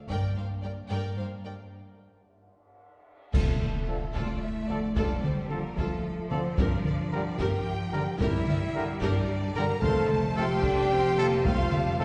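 Pulsing at 74 beats per minute in a straight 6/8, this dark, relentless cinematic orchestral cue in D minor, cut from a longer piece, is driven by a distant taiko ensemble struck with hard sticks in a large room. Mellow French horns hold sustained chords throughout, while a lush string body fills out the texture: a violin melody set in the background, a clear second violin line with a smooth top, close violas in accompaniment, and expressive cellos with even, rich double basses carrying the bass from afar. A close, dry layer of cymbal swell, clash cymbals and concert bass drum marks the opening, through a break and a drum fill that lead into a full-band accent at 3.3 seconds, where the harmony moves from G minor to D minor. From 3.9 seconds a very quiet, punchy trombone section adds sustained chords and a solo trumpet places stabs in the background, as the progression continues to G minor and then F. 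The whole is heard from further back on a scoring stage, bathed in long, wet reverb with a soft, rolled-off top.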